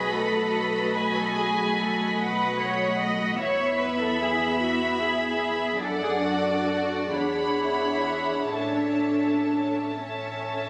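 Recorded on a phone in the room, this short cut from a longer piece carries a club-like reverb over a moderate scoring-stage ambience, giving the strings a hazy, roomy glow. It is a slow romantic movement for string orchestra in 12/8, moving at about 41-50 BPM counted in dotted quarters with a free, rubato feel, tuned to A4 = 441 Hz, and its mood is tender and serene. The first violins carry the melody between B4 and B5 with a pure, floating tone and a gentle sul tasto touch. A darker, intimate chamber violin section sits up front with vibrato on a second line. Violas fill in a shadowed accompaniment with light vibrato, cellos supply a close, bowed bass line reaching up to D#5, and the double basses add a mellow low foundation from A1 to F#2 at a lower level. All five sections play together across the full 10.7 seconds as the harmony moves from B7 to E, D/F# and E13 before settling on A.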